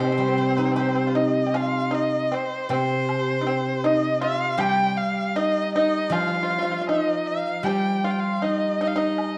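A dark recital-hall wash surrounds this graceful, wistful Chinese chamber piece at 78 BPM in 2/4 with a rubato feel in C yu mode, where a clear, smooth erhu sings the bowed melody with vibrato and portamento up front, a dry, percussive fingerpicked pipa carries the second line, a ringing, silvery zither accompanies, and a close woodblock enters in the background at 0.8 seconds in this fragment cut from a longer work.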